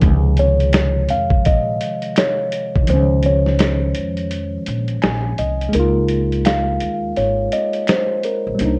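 Lo-fi hip hop with a dreamy, mellow mood and a swung feel, cut from a longer piece, built on a worn, slightly out-of-tune tine electric piano with cassette coloring, a woody, growly pizzicato upright bass and a gritty, compressed sampler-style drum kit with a thumpy kick and a medium-tuned snare. A soft, ringing kalimba, close-miked and dry, carries the melody from 0.4 s, while a distant finger snap sits in the background. The kick drops out at 2.9 s, and the recording is framed by a small-room ambience and a warbling, old-tape pitch drift.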